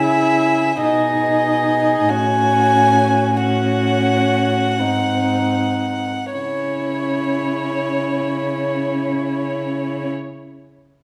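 A rubato 3/4 pulse drifts between 37 and 52 BPM, slowing through the opening 6.3 seconds in this solemn, yearning slow romantic movement for string quartet in C# minor, cut from a longer piece. A rich, intimate first violin carries the melody up front with light vibrato, a soft attack and an airy sul tasto bow, while a dark second violin and a woody, close viola fill the inner lines with vibrato, all over a cello bass played with the same hushed, breathy sul tasto touch. The harmony leans onto G#7 at 4.8 seconds before returning to C# minor as a new section begins at 6.3 seconds, all carried by a moderate recital-hall reverb.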